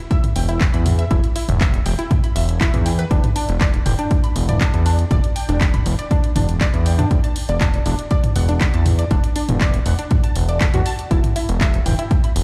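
A detuned, wave-folded unison pluck spins lush arpeggios with subtle chorus, tape echo and sidechain pumping, while a punchy, tape-warm kick sits up front beside an analog drum machine's handclaps, hi-hat and toms in this driving, cinematic melodic techno at 120 BPM in E minor. From 0.4 seconds a fat, thick sawtooth bass with a filter sweep pumps underneath, as the harmony moves from Em through G5/E and D/E back to Em. The dry parts sound as if played back through a big system in a bare room, giving a large studio reverb to this short cut from a longer piece.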